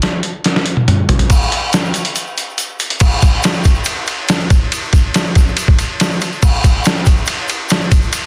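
Rock with a bittersweet, cool mood, this short cut from a longer piece is built on a gritty, pitched-down, sampler-style boom bap drum kit sitting up front: a thumpy kick, a medium-tuned snare, hi-hat, ride, crash and toms, compressed and re-recorded in a large room. After a drum fill that ends at 1.3 seconds, a grainy, mellow tube shaker enters distantly in the background, and a break runs from 2.2 to 3.0 seconds before the final stretch. The sound is dry on the whole, with a dense, heavily limited modern master.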